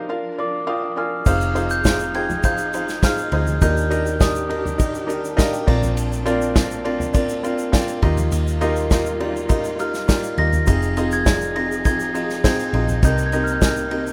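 Piano-driven pop with an uplifting, warm mood, this excerpt opens on a felt-muted upright piano, up front and intimate with audible action noise, over lush bowed strings in the background, while a glockenspiel played with rubber mallets rings out a soft, bell-like melody from 0.4 seconds. At 1.3 seconds an unplugged drum kit with dark cymbals and a punchy kick enters alongside a round, foam-muted electric bass and a grainy egg shaker. The glockenspiel drops out at 4.8 seconds and returns at 9.8 seconds, all within a dry, rough home-demo sound.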